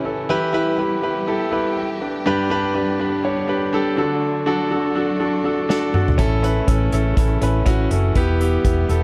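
A clear, up-front concert grand piano opens this uplifting, anthemic piano-driven pop excerpt, with a lush, distant string section sustaining bowed chords with vibrato and portamento in the background over a progression of Em, G, D and A. At 5.7 seconds an acoustic drum kit played with bundle sticks enters with a fill, bringing a punchy kick and medium-tuned snare, and at 6.2 seconds a round, foam-muted fingered electric bass joins low underneath. The dark production carries light reverb and a studio ambience.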